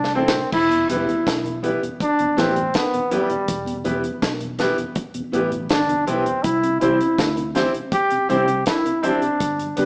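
Heard through a small speaker in a stone room's reverb, this laid-back, meditative roots reggae excerpt in E minor at 81 BPM opens on a drum fill over Am from a dry, up-front kit with a high-tuned snare and dark cymbals, then settles on Em and later C as a clear trombone with light vibrato carries the melody, a mellow tonewheel organ with key click, chorus vibrato, slow rotary speaker and slapback echo fills the accompaniment, a polished grand piano adds stabs, and a round, foam-muted fingered electric bass anchors the low end.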